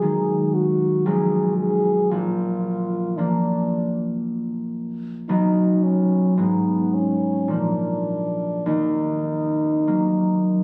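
In a slow, rubato 3/4 at roughly 49-58 BPM, this elegiac, solemn classical duo unfolds as a brief romantic fragment cut from a longer piece, tuned to A4 = 438 Hz. A warm French horn with a smooth top carries the melody up front in a classical style, while a ringing, thumb-plucked concert harp accompanies beside it through chords moving from Abm/Cb through Bb and B toward Ebm. Both parts play throughout the 10.6 seconds, captured on a phone in a recital hall whose moderate reverb rings for about 1.5 s.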